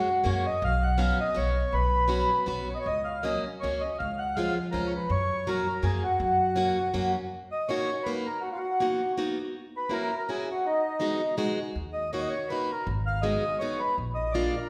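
A swung waltz lilt in three drives this whirling, nostalgic musette excerpt, with a mellow, reedy accordion carrying the melody up front over a picked, plugged-in steel-string acoustic guitar whose accompaniment lets a little finger squeak through. A woody pizzicato upright bass anchors the opening phrase, falls away at 7.2 seconds as the harmony turns to a minor key, and returns at 11.8 seconds. The whole performance sits in the wet, lingering reverb of a recital hall.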